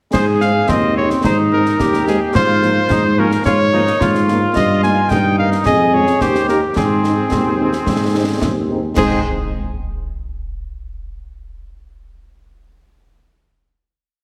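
A heavily compressed, radio-like sound sits in the reverb of a recital hall, giving this short, complete military-style march for wind band a festive, proud air. It moves at 109 BPM in a straight 2/4 in Ab major, passing through one main section before closing on a final chord at 9.0 seconds. Up front, a clear solo cornet carries the melody in a classical style, with light vibrato and a soft attack, while a tight woodwind section adds a warm counter-melody and sustained chords beneath it. A distant, roomy tuba plays sustained bass on the beats, and a mellow French horn section with a smooth top enters at 0.4 seconds in the background with after-beat chords. Close and dry concert percussion sets a marching snare over a bass drum on the beat, topped by dark clash cymbals.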